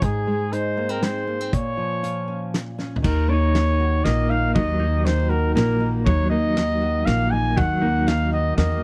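A dry, close recording with a small-room, 1970s studio feel frames this reflective, intimate fragment of acoustic folk in 3/4. A clear flugelhorn with light vibrato carries the melody over a bright, fingerpicked nylon-string guitar and a loose indie drum kit with dark cymbals, a fat snare and a punchy kick. After a drum fill at 2.8 seconds, a woody, growly pizzicato upright bass enters up front at 3.0 seconds, and a dark, clean electric guitar adds tremolo-treated arpeggios in the background from 3.3 seconds.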